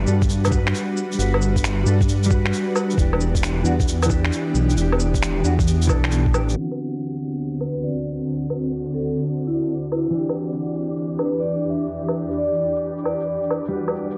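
Rainy and wistful, this future garage excerpt in E minor moves at 134 BPM with a 66% swing on the 16ths, as a dark, clean electric guitar with 12-bit sampler grit and analog delay and a cloudy, evolving granular pad pump alongside a deep, rumbling detuned saw bass and a muffled, thumpy kick that drop out after about 6.5 seconds. Tape-warm cabasa, shaker, woodblock and finger snaps carry on throughout, while a metallic, ringing vibraphone played with medium hard mallets enters at 7.7 seconds with analog delay, joined by an airy, wind-like noise texture in the background. Chords drift from Gmaj7 and Em7 to D7 and back to Em7, with a filter sweep across the second half and light digital ambience over a low-passed mix.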